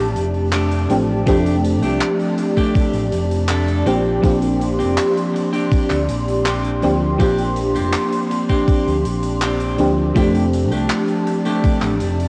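Lightly reverberant, cassette-recorded home sound frames this dreamy, nostalgic vaporwave fragment, where a lush, up-front FM electric piano with a soft pad layer and a warbling, detuned tape-like pad carry chords moving from F69 to Bb69 and back to F69, a dark, clean electric guitar riff threads through lush chorus, analog delay and 12-bit sampler grit, an overdriven, round fingered bass sits up front, and a gated 80s kit of handclaps and hi-hat is joined at 1.3 s by a thumpy electronic kick.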